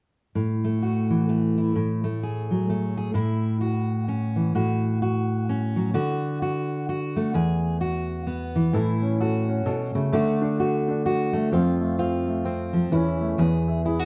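A large studio room with moderate reverb surrounds this short cut from a longer acoustic folk piece, giving it a warm, hopeful glow. Set in A major at 129 BPM in a swung 3/4, it opens at 0.4 seconds with a full-bodied, fingerpicked steel-string dreadnought guitar, placed up front as the accompaniment and reaching from its low E string up into the middle register. The harmony moves from A and F#m over an A bass to D and E, and later takes a brief turn through an F chord before settling on A over E and then E. At 8.7 seconds an upright piano joins with arpeggios, its woody, intimate tone sitting a little behind the guitar, with audible action noise adding a natural, close-up character. The two instruments play together until the excerpt ends at 14.1 seconds.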